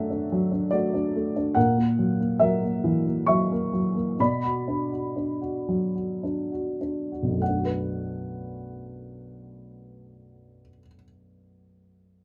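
In a rubato 3/4 that moves between 48 and 73 BPM and slows from 1.6 to 7.4 seconds, this wistful, reflective fragment of a lyrical classical solo piano piece presents a dark, woody upright piano of mellow, short-sustained tone, placed up front through close, detailed microphones with light reverb, as its harmony passes from Bm7 through F#7/A# to Bm and back to Bm7 over 12.2 seconds.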